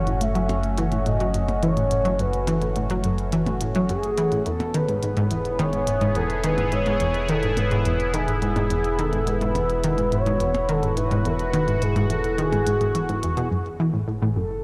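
An up-front analog pluck drives this hypnotic, mysterious slice of ambient, sequencer-driven space music, its round, detuned sawtooth riff sitting low and carrying chorus, delay and a gritty vintage 12-bit sampler edge until 14.4 seconds. Above it, an expressive synth lead sings a smooth, mellow melody with vibrato and a moving notch, wrapped in lush chorus and delay. A bright, resonant pad sustains chords beneath, its evolving, detuned layers given a long release and a touch of chorus. A deep sine sub bass anchors the low end, while clicky electronic hi-hats and percussion blips, echoed by delay, enter at 0.1 seconds. At 106 BPM in straight 4/4, the harmony moves from F#m to E and returns to F#m at 13.5 seconds, all bathed in a dreamy, reverb-soaked hall.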